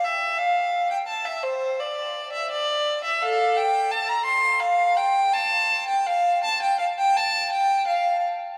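Heard in a church or concert hall with a deep cathedral reverb that lingers about 6.8 seconds, this brief cut from a longer classical piece is a solemn, grave baroque-style suite movement for unaccompanied violin at 84 BPM in 4/4, played with rubato. A single bowed violin, rich and smooth with vibrato, carries the line alone from 0.0 to 8.2 s between A4 and C6, tuned to A4 = 442 Hz. It moves from D minor into F major at 3.2 s.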